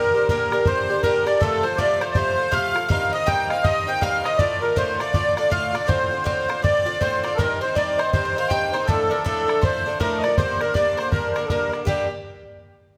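Spirited and driving, this Celtic folk hornpipe in G minor swings along at 161 BPM in 4/4. A reedy, sweet accordion with a light tremolo tuning carries the melody up front, while a clear, boxy bowed fiddle and a bright, woody picked mandolin trace second lines in the background over a metallic Irish bouzouki accompaniment. A damped, tight bodhran joins at 0.3 seconds, and the whole fragment sits in a wet recital hall reverb as the chords move from Gm through F, Cm and Dm and back to Gm.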